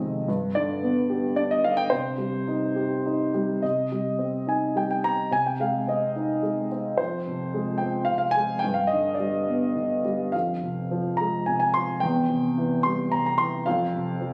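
A phone recording made in the room catches a dark, mellow baby grand placed up front, its long sustain blooming into a moderate concert-hall reverb. This lyrical classical solo piano piece in C minor is bittersweet and moody, moving at 109 BPM in 3/4 with a free, rubato feel and ranging from E2 to C6. Cut from a longer work, it opens with a brief first section before a second section begins at 3.6 seconds, its harmony passing through C minor, A-flat over C, F minor and G before settling on an open F fifth at 13.7 seconds, just before the close at 14.3 seconds.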